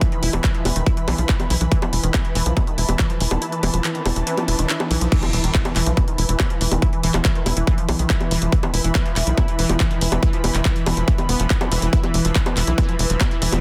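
An overdriven, punchy electronic kick drives this hypnotic psychedelic trance excerpt at 141 BPM, alongside a tight, nasal sequencer bass, a lush detuned unison pluck riff with dub echo, an overdriven big-room kit of bongos, crash, handclaps and hi-hat, a resonant ring-modulated drone with moving overtones, an ethereal, warbling airy pad in the background, and very quiet electronic riser, impact and zap effects, with the kick dropping out at 3.4 seconds under the riser before the drop lands at 5.1 seconds in a dense, heavily limited modern mix.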